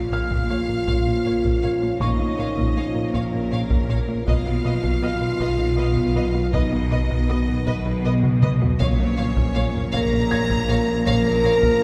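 A slow 6/8 pulse at 53 BPM is driven by a taiko ensemble struck with hard sticks and a tight, punchy sequencer bass riff, with a drum fill at 8.2 seconds in this relentless, futuristic hybrid orchestral and electronic film cue in Bb phrygian, moving from Bbm to B and back. Dark, distant French horns and a smooth trombone section hold sustained chords over a rumbling phaser-tinged drone, while bowed double basses and cellos anchor the low end and a focused violin melody sounds alongside an intense second violin line and an expressive viola accompaniment with portamento. A tine-like synth pluck traces quiet arpeggios and an intimate grand piano, its action noise audible, adds high texture, all bathed in a church reverb.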